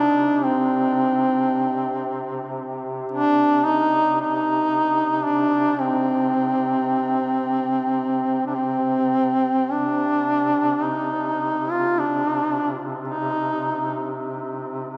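This Caucasian folk lament, cut from a longer piece, unfolds in free time in C minor, tuned to A4 = 439 Hz, with a solemn, mournful mood. An up-front warm duduk carries the melody between C4 and F4 with vibrato, soft attacks and scooped notes until 14.1 seconds, while a second duduk holds a distant, roomy drone on C3 through to 15.0 seconds. The church or concert-hall setting wraps the pair in a long, wet cathedral reverb, and the music shifts into a new section at 9.7 seconds.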